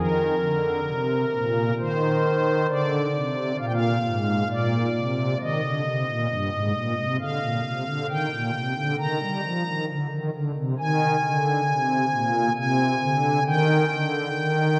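A pipe organ sounding its strings celeste stops carries this short classical chorale-style passage alone, its soft, shimmering string tone placed up front with a romantic voicing that spans from G2 to Bb5. The mood is reverent and majestic, moving at a stately 67 BPM in 3/4 with a straight feel, in Eb major and tuned to A4 = 436 Hz. The harmony opens on Eb, pauses briefly on an unharmonized moment at 1.8 seconds, then passes through Bb7, back to Eb, through Bb and Eb again, and on to Ab before settling on Eb at 13.5 seconds. A long church reverb of 3.2 seconds surrounds the organ, and the dark production lends the whole 14.8-second cut, taken from a longer piece, a hushed, devotional glow.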